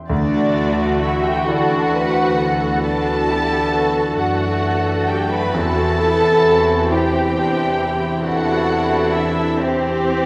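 A wet scoring-stage reverb bathes this short orchestral passage from an emotional film score, cut from a longer piece, lending it a hopeful, moving air. The tempo is a slow, rubato 44 beats per minute in 6/8, with harmony that rests on Dadd9 before shifting to C/E at 5.6 seconds. A warm concert grand piano opens the passage at 0.0 seconds and sits in the background with deep, vintage bass. From 0.1 seconds, a symphonic violin section carries the melody, con sordino and veiled, with vibrato and a lush, smooth top, while a distant studio violin section traces a soft-edged second line beneath it. A close chamber viola section fills in the accompaniment, and a dark, roomy French horn section holds sustained chords. Muted cellos, tucked in the background, and double basses with light vibrato supply the bass.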